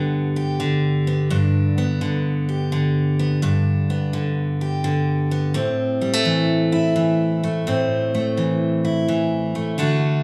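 Country in a swung three-four lilt, this short excerpt has a sunny, down-home mood carried by a lone picked steel-string acoustic guitar. The dreadnought sits up front with a bright, full-bodied tone, moving from G to A minor around 5.5 seconds. A moderate reverb from a large studio room gives the guitar a natural, live-in-the-room presence.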